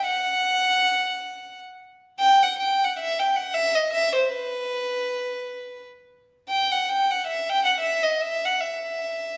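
In free time, this fiery, restless Balkan folk excerpt features a solo violin, bowed sul tasto by one player up front, its pure, floating tone and soft attack ringing through a wet stone room with a band-in-one-room feel and lossy compression artefacts.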